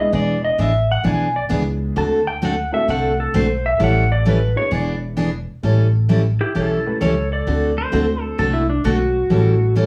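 A clean, compressed lap steel guitar leads this down-home, swinging western swing excerpt with a slide melody and volume swells, over a bright picked dreadnought acoustic, a thumpy gut-string upright bass and a worn, slightly detuned upright piano in the background, before a twangy pedal steel takes up a second line at 7.8 seconds in a moderate booth ambience.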